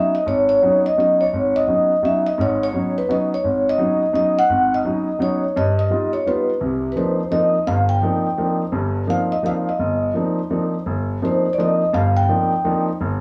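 Intense and spiritual in mood, this jazz waltz moves at a brisk 170 BPM in 3/4, its eighth notes given a light swing. A vibraphone struck with soft mallets carries the melody, its metallic, ringing tone mellow and warm, shimmering with a fast motor vibrato and placed up front. A concert grand piano, also up close, supplies the accompaniment with an intimate, natural sound, deep bass, long sustain and audible action noise. The harmony opens on C#9sus4 and passes through Gaug7 before settling into C minor at 6.6 seconds on a Cm11 chord. The vibraphone stops at 12.8 seconds, and the piano briefly plays alone to close this fragment of a longer piece. The whole recording sounds as if heard from a worn, old cassette, with warbly pitch drift and a small room's ambience.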